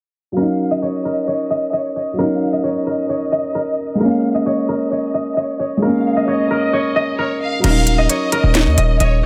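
A dark, boxy felt-muted upright piano opens this menacing, eerie half-time hip hop and trap fragment at 0.3 s, joined by a ringing, fingerpicked concert harp melody with delay and a lush, bowed violin section with vibrato on a higher second line, set in a small, lightly reverberant room under a filter sweep, until at 7.6 s a punchy, heavy 808-style bass and an electronic trap drum kit with a sharp snare, crisp hi-hats, handclaps and crash cymbal hit in.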